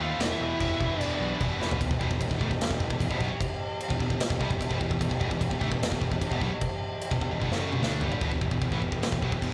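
Aggressive and epic, this heavy metal excerpt in E minor drives at 150 BPM in 4/4, opening in half time as a dark, distorted lead guitar melody with delay and a second lead line underneath sound only until 1.4 seconds. Two bright, high-gain rhythm guitars, one of them scooped, carry the riff alongside a growling, overdriven picked bass and the thick, romantic foundation stops of a pipe organ holding sustained chords in the background. Up front, a big acoustic rock kit with a boomy kick, medium-tuned snare, china and crash cymbals enters at 0.2 seconds and throws in drum fills, including one from 7.4 to 8.2 seconds, all inside a moderate cathedral reverb and a rough rehearsal-room sound.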